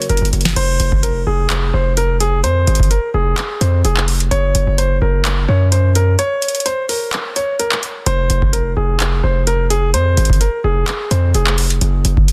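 Menacing and eerie, this trap-leaning hip hop cut moves at 128 BPM with a heavy half-time feel in F phrygian. It is taken from a longer piece. A concert grand piano carries the melody for almost the whole clip, its intimate tone warm, present and up front, with audible action noise and a digital delay trailing its notes. At the very start, a second, darker and boxier piano and a faint bowed chamber string section, expressive with vibrato and portamento, sound only briefly before dropping away by 0.6 seconds, as a drum fill from the booming analog drum machine launches the main groove. The machine's deep kick, crisp snare, handclaps, metallic hi-hats and crash sit up front, with a short room on the snare, clap and hats, while a punchy, saturated 808-style bass with a fast attack and decaying sine tone, layered with noise, hits hard underneath. Harmony shifts between Gb and Fm, a break arrives at 6.2 seconds, and the dense, heavily limited mix stays dry.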